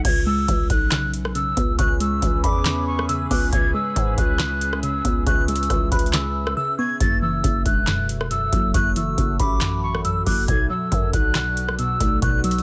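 A booming analog drum machine sits up front in this eerie, dark half-time trap excerpt, with a deep kick, crisp snare, metallic hats, handclaps, rim clicks and crash cymbal, all carrying a tape-tinged character and a short room on the snare, claps and hats. A breathy, bright jazz flute carries the high melody through a low-pass filter and tape echo, its vibrato and chiffy attack giving it a haunting edge. Underneath, a growling, buzzy 808-style bass and a warbly, dusty lo-fi pluck, detuned and chorused, anchor the low end as the harmony moves from C#m7 to F#m7 and then Bm7. A deep, moody ambient pad enters at 0.9 seconds with slow, sustained chords bathed in chorus and reverb, and a glassy, crystalline FM bell adds a faint second line in the background from 1.8 seconds, shimmering with tremolo and tape echo. The drums drop out briefly at 6.6 seconds, leaving the melodic layers hanging before the beat returns, while the overall sound stays dry and close.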